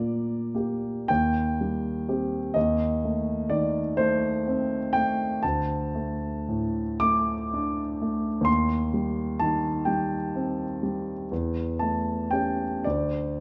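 A solo grand piano opens on a G minor chord over B-flat, setting a mournful, wistful tone in this romantic classical nocturne. The pace is very slow, around 34 to 43 beats per minute counted in dotted quarters, in 6/8 with a flexible, rubato feel. The harmony moves through C minor, a diminished chord and a bare D fifth, then back to C minor before reaching an A7 chord near 11.3 seconds, and at 12.8 seconds the chordal harmony dissolves. The piano's tone is warm and sits up front, spanning from a deep D2 to a bright D6, captured by close, detailed microphones within a moderate recital hall reverb. This 13.4-second fragment of a longer piece lingers like an unfinished sigh.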